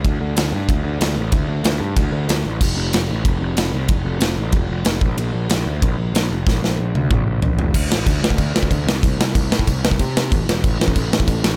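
Dry and close, this short punk rock cut from a longer piece puts a two-part lineup up front in a room with little reverb. The fuzz picked electric bass sounds bright and growly, its overdriven tone coming straight from the amp as it ranges from E1 to C3. Beside it, a big acoustic rock kit recorded in a studio room brings a punchy kick, a medium-tuned snare, crash and ride cymbals and toms. The opening stretch sits in a half-time feel, and a drum fill from 6.5 seconds carries the music into a new section at 7.7 seconds. The straight 4/4 drive and snarling bass give the piece an energetic, rebellious mood.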